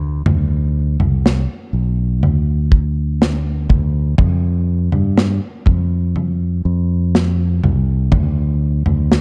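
A fingered electric bass opens this short pop ballad cut, joined at 0.3 seconds by a modern studio drum kit, and both play through to the end at 9.2 seconds. The tempo is a slow 61 BPM in a straight 4/4, and the mood is tender and hopeful. The bass sits low, moving between B1 and G2 with a punchy, direct and amped tone placed up front in the mix. The acoustic kit, also up front, brings kick drum, snare drum and toms, with a tight kick and a medium-tuned snare that sound dark and smooth in a small room. The production is dry and warm overall, giving the pairing of bass and drums an intimate, close feel.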